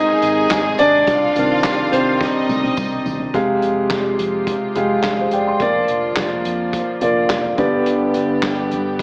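The dark baby grand piano sits up front throughout this 9-second excerpt of bittersweet, driving piano-led pop, opening with a mellow, long-sustaining solo passage over the first 3.3 seconds at a straight 106 BPM in 4/4. A clear violin section with light vibrato and an earthy bowed tone carries a second line until 3.3 s, while a distant string section holds sustained chords in the background with a reedy, gut-string, period-style colour. From 0.2 s a soft-mallet drum kit enters, roomy and distant with a punchy kick, medium-tuned snare, hi-hat, toms and handclaps, and it plays a fill from 2.2 to 3.3 s. Beneath it, a vintage foam-muted fingered electric bass adds a round, amped low end, and a jingly, close and dry tambourine sits very quietly until 3.2 s. The harmony moves from Ab and Cmadd9 into Fmadd9, Bb/F and G in the second part, and the whole mix carries a moderate plate reverb and an AM radio sound.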